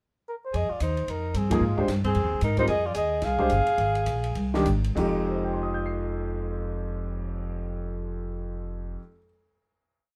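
A veiled, bucket-muted trumpet opens this short, cool and intense modal jazz piece with a motif-based melody, joined at 0.5 s by a breathy alto saxophone with scooped notes harmonizing mostly in sixths, a woody walking upright bass on gut strings and a dark, small-room cocktail kit keeping a stick ride pattern, while a clear concert grand piano enters on a band accent at 1.5 s to comp in syncopated quartal voicings, the swinging group slowing down before a final chord that begins at 5.0 s, with light reverb throughout.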